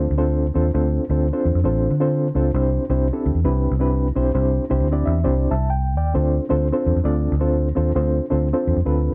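Uptempo 1960s-style soul at 133 BPM in 4/4, with a swung eighth-note feel, this short excerpt cut from a longer piece carries an urgent, passionate mood. A mellow, reedy electric piano plays the accompaniment throughout its 9.1 seconds, its clean tone pulsing with a fast tremolo and heard through its built-in speakers. Beneath it, a vintage muted fingered electric bass sits up front with a round, punchy, foam-muted sound. The harmony moves from Dm7 to Cadd9 at 2.5 seconds and back to Dm7 at 6.1 seconds, and the electric piano adds a fill from 4.8 seconds. The production is dark, with light reverb and a faint mains hum.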